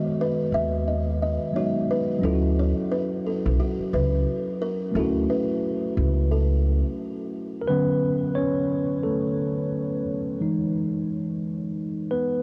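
Dreamy and cosy, this lo-fi hip hop excerpt in D major moves at 88 BPM with a swung 16th-note feel, set in a huge ambient reverb and a cassette-tape haze. A buzzing, hollow-boxed kalimba carries the melody through a low-pass filter while a mellow tine electric piano, heard through its built-in speakers, plays a rootless Emaj9 followed by a Dmaj9, and a woody, dark pizzicato upright bass sits up front. The kalimba stops at 7.3 seconds and the bass at 6.8 seconds, leaving the electric piano to play alone over Dmaj7 and Emaj7 from 7.7 seconds to the end.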